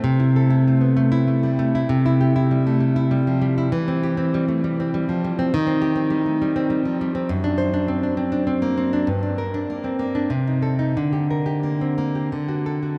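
In a rubato 3/4 that drifts between 86 and 105 BPM, this passionate, wistful romantic excerpt for solo classical guitar places a warm, fingerpicked nylon-string guitar up front, moving from C major colors into G minor from 5.5 s and closing on a D chord near 12.3 s, all bathed in a huge, echoing reverb that makes the instrument sound as if it were playing in a vast space.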